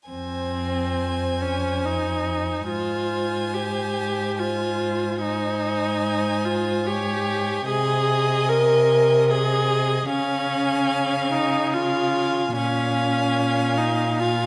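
A slow, rubato string quartet movement in F minor opens at 0.1 s, its four bowed voices sounding together in 3/4 at 73 BPM with a yearning, melancholic cast, heard as a portion cut from a longer romantic piece. A clear, focused first violin sits close and sings the melody high on Ab5 with vibrato, while the second violin traces a smooth, even line between C5 and F5, the viola fills in a rich accompaniment set up front, and the cello anchors the bass from F2 to Db3 with a smooth, even tone. The harmony moves from F minor through A-flat and D-flat to B-flat minor seventh, all bathed in the lingering reverb of a recital hall.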